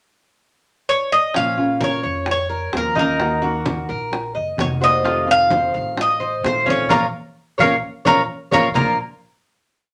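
A picked Cuban tres sits up front with a metallic, double-strung voice, entering alone at 0.9 s in the pickup bar to sing short, song-like motifs over this short, nostalgic and sultry piece of Cuban son and guajira in Bb harmonic minor, moving at 130 BPM in a straight 4/4. At 1.3 s the rest of the band joins: a second tres weaves an arpeggiated guajeo with some octave-doubled strings, while a dark nylon-string guitar, fingerpicked in classical style, adds strummed chords with muted slaps. Beneath them, a woody, thumpy pizzicato upright bass plays a tumbao that anticipates the changes through Bbm, Ebm and F7. In the background, low-tuned congas with a thick-skinned, soft-handed touch mix slaps and open strokes, and round, close, dry bongos struck with hard hands keep steady eighths alongside a hand bell. The ensemble hits a band accent from 6.9 s before landing on a final Bb chord at 8.8 s, all set in a moderate studio reverb.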